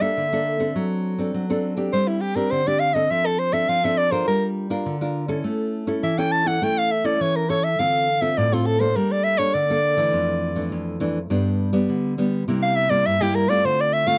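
A straight 4/4 samba at 102 BPM in D minor, tuned to A4 = 441 Hz, this nostalgic, yearning excerpt moves through chords such as Gmadd9, D7/F#, A and C7 before settling on Dm7. A warm, punchy soprano saxophone carries the melody as an up-front jazz solo from 0.0 to 14.2 seconds, playing forcefully with scooped notes and a smooth top. A bright, fingerpicked classical nylon-string guitar accompanies it, also up front, in a dry, close 1970s-style studio sound with a moderate booth ambience.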